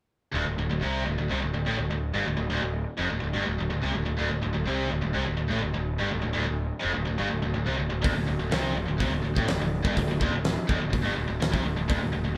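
Heavy metal in D minor at 125 BPM in a straight 4/4, this short excerpt of a longer piece carries an epic, heavy mood. Two distorted electric guitars drive the riff from 0.3 seconds, both bright, picked and up front, one high-gain with a scooped edge and the other tight, working low between D2 and C3. A fuzz-laden picked electric bass runs beneath them from D1 to C2, overdriven and punchy, its direct-and-amped tone cutting through. At 8.0 seconds a big acoustic rock kit joins with hi-hat, a punchy kick and a fat snare, its sound dark and smooth in a big room. The band plays live together in one room, framed by moderate studio reverb that gives the whole a solid, present weight.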